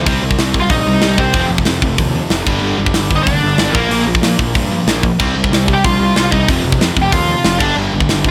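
A smooth, bright overdriven lead guitar sits up front in this raw, angry punk rock cut, entering at 0.6 seconds over a tight metal drum kit with a mid-forward sound, bright cymbals, a tight kick and a medium-tuned snare at a driving 187 BPM in straight 4/4. Behind them, a cranked stack guitar and a double-tracked distorted guitar play the riff in the background, with a very quiet, sludgy guitar beneath, while a growly, fuzz-laden picked bass anchors the low end. The chords cycle through Cm, F5, G5 and Bb5 in a dry mix with little reverb, in a short clip taken from a longer piece.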